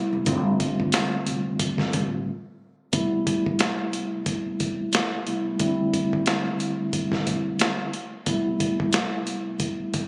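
A swung 90 BPM boom-bap groove in A minor drives this moody, tough hip-hop piece, its gritty, pitched-down sampler drums with a thumpy kick and high-tuned snare sitting up front beside a mellow, clean tine electric piano heard through built-in speakers and filtered at both ends, while a woody pizzicato upright bass plays only until 2.2 s, a very quiet jingly tambourine flickers briefly at 0.9 s, and after a short break the harmony moves from G7sus4 to Am7 at 2.9 s, the whole captured on a phone in the room with compression and a light club reverb.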